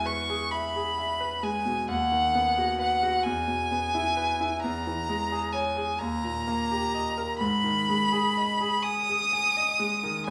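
Yearning and solemn, this romantic classical excerpt for violin and grand piano unfolds in a slow, rubato 6/8 at 43 BPM, with a rich, smooth and even solo violin carrying the melody up front with vibrato while a bright, brilliant concert grand with deep bass and short sustain accompanies, the harmony moving from E through B/D# and turning to G# minor from 4.6 s via C#m/E and D# to G#m, the duo heard in a moderate large studio reverb with small room ambience and a faint mains hum.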